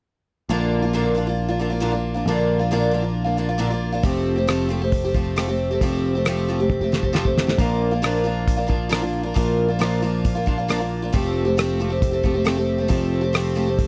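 A straight, steady four-beat pulse carries this hopeful folk rock and heartland rock passage, cut from a longer piece. A bright, shimmering picked twelve-string acoustic guitar sits up front from the opening, its octave-doubled fresh strings ringing over a Bb to Fadd9 progression. A warm picked electric bass, direct and amped, holds down the low end beneath it. A damped 70s drum kit joins at 4.0 s with a fat snare, tight kick, hi-hat, rim clicks and toms, dry and up front. A drum fill at 6.7 s leads into the second section at 7.6 s, where the same chord pattern returns. The small room ambience and close, dry sound give it the feel of a 1970s studio session.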